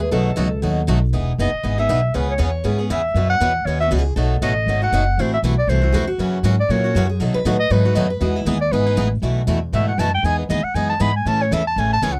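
A bright, auditorium-toned steel-string guitar opens with a brief solo over a woody, growly pizzicato upright bass, while a boxy swing-style guitar with audible finger squeak and a full-bodied steel-string dreadnought add picked accompaniment in this charming jazz manouche cut at a brisk 237 BPM in E major. At 1.4 seconds a clear, up-front clarinet takes the melody with light vibrato and scooped notes, the bright guitar weaving a second line until 8.5 seconds and the dreadnought returning at 5.2 seconds after a short pause. The swinging, dry, close-miked sound recalls a 1970s studio, with chords moving from Emaj9 and C#m7 through Am6 and F#7 to B7.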